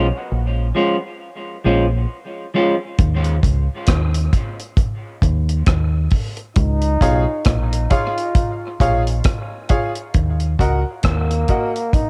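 Deep and spacious, this dub reggae excerpt opens on a break built from a round, dark fingered electric bass, thickened by transformer saturation, and a clean, picked semi-hollow guitar whose hollow-body tone trails off into dub echo over a Db chord. The drum kit comes in at 3.0 seconds, dry and smooth, with a tight kick, rim clicks and hi-hat under a rolled-off cassette tape haze, while the harmony drops away for a stretch. At 6.6 seconds the Db chord returns and a clear, punchy trombone takes the melody with light vibrato and a pop-style delivery, its line coloured by cassette tape and dub echo. Just after, a bright, woody upright piano adds brilliant, worn, slightly detuned stabs that ring out through their own dub echo. The piece shifts to Ebm for a closing section, and the bass and drums sit up front in a home-recorded cassette sound with light reverb and studio ambience, giving the swung groove a close, intimate feel.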